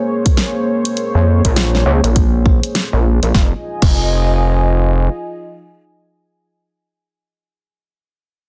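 Gritty and swaggering, this short glitch hop fragment with a swung 16th feel opens on a deep, detuned analog pad with chorus and sidechain pumping, holding sustained chords from Bbm9 to Fm7, joined at 0.3 s by a punchy, up-front electronic kick and a layered pop drum kit of crash, hi-hat and fat snare in studio reverb, while from 1.1 s an aggressive, wave-folded sawtooth synth bass with oscillator sync and tube saturation sits up front until 5.1 s inside a dense, heavily limited master.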